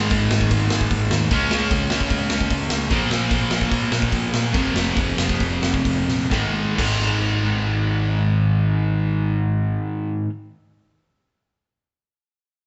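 Rebellious and rowdy, this punk rock cut in Ab major charges along at 128-150 BPM in a straight 4/4, with a bright, double-tracked overdriven stack guitar riff up front, a punchy fuzz bass tucked in the background, and a gritty, boomy garage drum kit pumping in a stone room; the tempo eases back from 2.9 seconds, a drum fill at 6.1 seconds leads into a new section, and the drums stop at 6.9 seconds, all captured as a band playing live in one room with nothing above 8.0 kHz.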